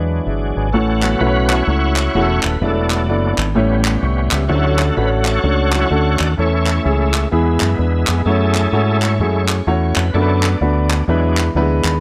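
A bright, shouting tonewheel organ, lightly overdriven through a slow rotary speaker with chorus vibrato and key click, takes the solo from 0.7 seconds in this hopeful, soulful uptempo gospel excerpt at 128 BPM in A major, swung over a natural grand piano, a round, punchy fingered electric bass, hollow group handclaps from 1.0 seconds, and a very quiet French horn section that sounds only until 0.7 seconds, all set in light small-room reverb.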